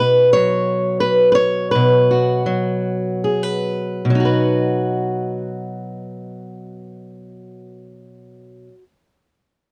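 A fingerpicked steel-string acoustic guitar opens on a B5 chord and carries this short folk fragment entirely on its own, from 0.0 to 8.9 seconds. The mood is gentle and nostalgic, moving in a loose three-beat metre with a rubato feel. The first phrase slows as it goes, and at 4.1 seconds a new section begins on a full B major chord. The guitar's tone is dark and concert-like, spanning a range from low B2 up to C#5. The sound is dry and close, in the manner of a 1970s studio recording, with the instrument placed up front and little room reverb around it.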